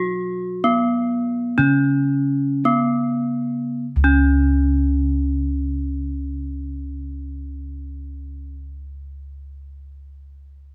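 Close, detailed microphones capture this Javanese gamelan passage in a moderate recital hall, where a reverb of about 1.4 seconds lets the bronze ring into the room. It is a short cut from a longer piece, serene and shimmering in mood, in 4/4 with a straight feel at a slow pace between 47 and 72 BPM. A gamelan-type bronze metallophone carries the melody up front, struck with horn mallets for a bright, ringing, metallic tone. Beneath it, gamelan-type bossed gongs supply the bass, also up front and reaching down to Db2, with padded beaters drawing out a round, mellow, soft sound and a gentle beating shimmer. Both instruments play together from the start to 8.5 seconds. The music slows through its opening 3.8 seconds before moving into a new section that runs to the close.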